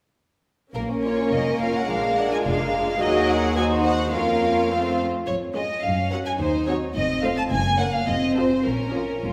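This excerpt of a quick classical-period movement for symphony orchestra opens at 0.7 seconds with violins, violas and double basses sounding together in Bb minor, and the cellos join at 1.3 seconds. The mood is dramatic and restless, moving at 106 BPM in 2/4 with a rubato feel. The first violins carry the melody up front with a warm, intimate tone and light vibrato. A darker second violin line, smooth on top, sits beneath, while violas supply accompaniment and the cellos share the bass with a clear, floating double bass section, all bowed sul tasto with soft attacks. The harmony travels from Bbm through Bb7, Ebm, Gb and a Cdim/Eb before F7 resolves back to Bbm, all set in a wet recital-hall reverb.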